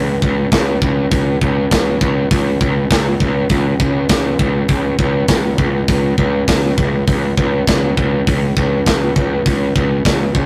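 Aggressive and epic, this heavy metal excerpt at 101 BPM in a straight 4/4 opens with a growly, overdriven fuzz bass picked around C#2 and pushed up front, joined at 0.2 seconds by a tight, acoustic drum kit with a medium-tuned snare, tight kick and hi-hat in a big room, all captured as a rough rehearsal-room recording with light reverb and warm saturation.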